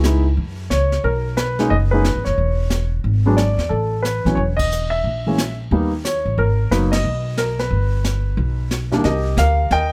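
Moody and cool, this fast jazz piano trio swings at 180 BPM in 4/4, with a warm, natural grand piano carrying the melody up front through a plate reverb over changes such as Bmaj7sus2, E7, G#m9 and Cm7. A woody, thumpy pizzicato upright bass sits equally forward, while a brushed drum kit with dark cymbals, a high-tuned snare and a boomy kick plays further back in a small room. The band hits shared accents at 4.5 and 6.9 seconds in this cut from a longer piece, all framed by a light reverb.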